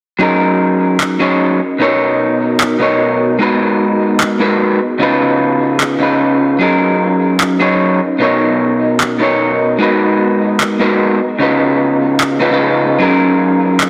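Half-time, layered electronic handclaps at 150 BPM with a light 16th-note swing drive this bright, euphoric future bass excerpt in F# major, where an up-front, slightly broken-up electric guitar through a small old amp plays picked lo-fi accompaniment with tape echo from 0.2 s, an ethereal, detuned sawtooth pad with ensemble chorus and a filter sweep sustains chords in the background, and a lush hall reverb and dense, heavily limited master frame a progression cycling through F#6, Bmaj7, G#m9 and C#7.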